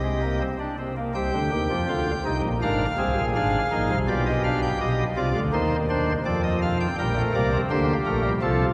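Heard from further back in a wet cathedral space with a long 6.2-second reverb tail, this short cut from a longer baroque-style, four-part fugue in C minor moves at a serious, driving 82 BPM in a straight 4/4. A pipe organ plays alone on a nasal cornet solo stop with baroque voicing, audible chiff and a tremulant, sitting up front and spanning Ab1 to G5. The harmony passes from C minor through darker diminished and dominant colours before settling on G minor near 7.0 seconds.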